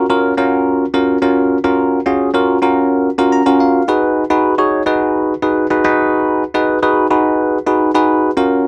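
A dry, close 1970s-style studio sound frames this summery, upbeat pop snippet at 107 BPM in straight 4/4, where a bell-like tine electric piano plays alone and up front, its bright, phaser-tinted tone moving through F#maj7, B6 and G#m7 with a short fill at 3.0 seconds.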